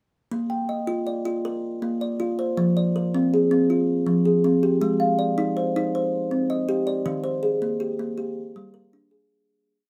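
Southern African traditional music in the mbira style: a short, hypnotic piece in 12/8 at 107 BPM, in Bb mixolydian, carried by a solo kalimba. The instrument plays an interlocking ostinato from 0.3 seconds, plucked with the thumbnail on a solid board, and sounds woody and ringing, with a boxy small-room character, sitting up front in light reverb. The cycle moves through Bb, Fm, Ab, Cm, Eb and Gm, and a fade-out begins at 7.1 seconds.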